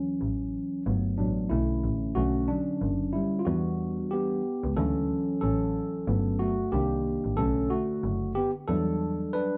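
Nocturnal and cool, this jazz-hop fragment of a longer hip hop piece moves at 92 BPM in 4/4 with a swung sixteenth-note feel in B minor. A bright, clean tine electric piano carries the accompaniment from the very start, sitting up front with a direct tone dressed in subtle chorus and plate reverb, and it takes a solo across the whole clip. A single bowed double bass enters at 0.2 seconds, clear and focused with vibrato, holding the low register beneath the keys until 9.2 seconds. The harmony drifts through lush ninth chords, opening on a rootless Dmaj9 and passing through Gmaj9, Bm9, Em9 and a shadowy Cm9 before settling back toward Em9. A wet small-room reverb and a dark, warm production give the pair an intimate, late-night glow.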